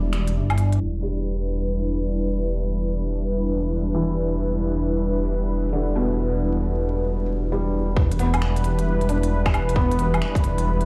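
A swung sixteenth-note feel in 4/4 drives this ghostly, rainy future garage passage, cut from a longer piece, which opens on a short break where finger snaps, hi-hat and woodblock from an organic electronic kit flicker briefly. A filter sweep then carries the music while a deep, detuned saw bass rumbles and beats up front, sustained and saturated, beside a moody analog pad with slow attack, sub-octave weight, chorus and vintage sampler grit, both breathing with sidechain pumping. A felt-muted upright piano sits intimate underneath, soft with audible action noise and short sustain, its notes trailed by tape echo and also pumping. At 8.0 seconds a tight, layered electronic kick punches into the foreground, and the kit returns with crisp, tape-warm hats and low-pass filtered percussion re-recorded in a large room. Over a single Em7 chord, the mix is muffled by a low-pass filter and vinyl crackle and set in a large studio reverb, as if played on a big sound system in a bare room.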